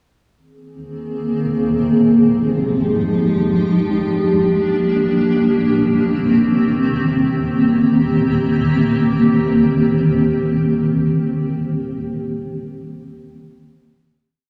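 This hip hop piece drifts in free time in C minor, with a spacious, melancholic mood carried entirely by a solo granular cloud pad that enters at 1.0 s and sustains until 11.3 s. The pad sits up front with a blurred, detuned, mellow tone, slow attack and long release, moving through Bb9sus4, Fm9, Gm7 and Cm7 before settling on a final chord at 7.2 s. Its own reverb blends into a wet recital hall ambience, giving the dark production a hazy, suspended feel.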